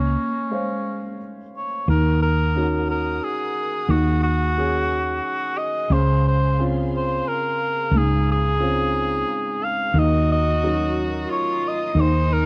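A mellow cor anglais opens this intimate, nostalgic acoustic folk-pop ballad, singing the melody up front with light vibrato in a classical style, joined at once by a boxy upright piano whose action noise is audible, a round, hollow-body fretless electric bass sitting low and prominent, and a close, sul tasto cello played by one bowed player. The cello steps away at 1.2 seconds, and at 1.9 seconds a dark chamber string section slips into the background with soft-attack sustained chords. Moving at 89 BPM in a straight 3/4 in Db major, the harmony drifts from Dbmaj7 through Ebm7 and Ab7sus4/Eb before settling back on Dbmaj7, then turning again to Ebm7. The cello returns at 10.0 seconds with its tender second line. A light reverb and the worn, warbling pitch drift of old cassette tape lend the whole excerpt a faded, memory-like haze.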